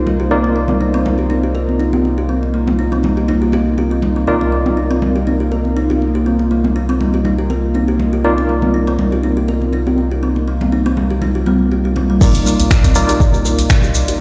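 Afro house at 121 BPM in C minor, this warm, driving clip, cut from a longer piece, rests on a single Cm11 chord with a light swing on the sixteenths. A dark, detuned analog pad holds smooth sustained chords with chorus, while a woody, hollow kalimba plays short thumb-plucked arpeggios through a low-pass filter and tape echo. A mellow, slightly out-of-tune tine electric piano adds stabs with medium tremolo and tape echo, and a round sine sub bass sits up front on C2 with tube saturation, all of these parts pumping against the sidechain. Bright, compressed congas carry the percussion until 12.1 s. At 12.2 s the drop arrives, bringing a deep, up-front electronic kick, an afro-pop kit of crash, finger snaps, dark hi-hat and toms under low-pass filtering, and grainy maracas. The mix sits in a large studio reverb with digital ambience, like a big sound system in a bare room.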